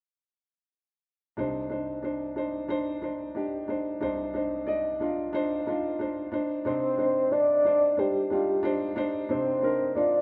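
A rough home-demo mix with moderate plate reverb frames this dramatic, earnest piano-driven pop fragment in C minor at 91 BPM with a lightly swung 16th feel, where a natural, up-front grand piano with short sustain opens on a Cmadd9 chord at 1.4 s and plays accompaniment through 10.2 s, joined at 6.7 s by a soft, round, dark synth lead layered with a sub octave that carries the melody through chorus, tremolo and vibrato.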